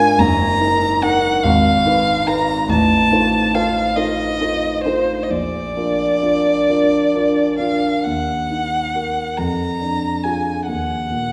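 A slow, rubato 6/8 pulse at roughly 43-49 BPM in dotted quarters carries this brief Romantic classical fragment for violin and grand piano in Eb minor, its mood elegiac and yearning. A single bowed violin sings the melody up front with vibrato, soft attacks and expressive portamento, while a dark, mellow grand piano supports it up front as well, reaching down deep into the bass. Both are heard through the lingering reverb of a recital hall from further back in the room. The harmony moves through Ebm, Abm, F7 and Bb before a second section from 8.0 s turns through a diminished chord back to Ebm.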